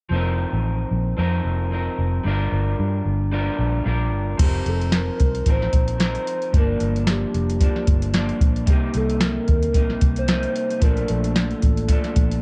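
A soft vintage rhythm box enters at 4.4 seconds with a deep kick, crisp snare and metallic hats, overdriven and up front, driving this hazy, laid-back indie and bedroom pop at 112 BPM with a light sixteenth-note swing. From the start, a round, foam-muted fingered electric bass and a slightly broken-up, picked electric guitar through a small old amp, touched with subtle chorus and vibrato, move through seventh chords. At 4.4 seconds they are joined by a warbling, nostalgic, detuned square-and-sawtooth lead with a sub octave, lush chorus and analog delay, all in a dark production with little reverb, cut from a longer piece.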